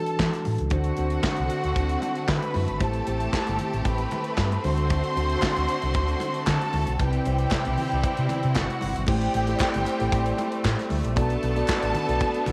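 A straight 4/4 disco groove at 115 BPM drives this short cut from a longer piece in A dorian, its mood driving and sultry. An up-front acoustic drum kit with a punchy kick, medium-tuned snare, hi-hat, handclaps and crash cymbal sits mid-forward with a rolled-off top, while a dark, round, amped fingered bass anchors the low end from 0.2 s. Thick-skinned vintage congas add a very quiet, band-limited pulse, and from 5.4 s to 11.8 s a hollow group handclap, distant as if in a large room, joins faintly. A mellow, clean tine electric piano heard through its built-in speakers carries the accompaniment, a close, clear bowed string section holds sustained chords from 0.7 s, and a rich, lush string section with smooth-topped vibrato plays a second line above. The harmony moves from E9sus4 through D7, Am7 and Cmaj7 before shifting to Am7 at 9.1 s and Bm7 at 11.2 s, all set in light reverb with a small room ambience.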